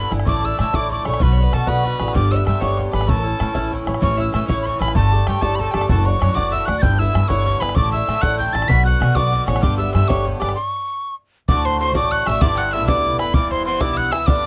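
A lively 6/8 jig rolls along at 128 beats per minute in dotted quarters with a straight feel, giving this bright Celtic folk excerpt in A mixolydian a brisk, dancing pulse. An airy metal tin whistle carries the melody up front, its tongued notes marked by a breathy chiff and touches of vibrato. Beneath it a single bowed fiddle plays a nasal, earthy second line with light vibrato, while a picked Irish bouzouki adds metallic double-string chords through changes like Asus4, Bm, G and Dadd9/F#. A woody, thumpy pizzicato upright bass sits prominently alongside a boomy, open bodhran to drive the rhythm. The band halts abruptly at 10.6 s, then resumes at 11.5 s into a new section moving through D, G6 and Em, all captured in a dry, close 1970s-style studio sound.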